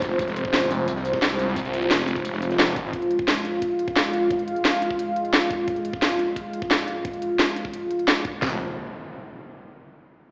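Tense and futuristic, this dark technical drum and bass fragment rests on a deep, moody analog pad of detuned sustained chords with chorus and sidechain pumping, joined by a swirling, thick phased saw bass with tube saturation that drops out at 2.9 seconds and returns briefly near the close. Two layered electronic drum and bass kits drive the groove, one with a knocking kick and the other carrying a cracking snare and crisp hats up front, while a very quiet, gritty acoustic breakbeat kit with a high-tuned snare sits beneath until 2.8 seconds. An electronic impact lands at 8.5 seconds, and the recording carries a lush hall reverb and an AM radio sound.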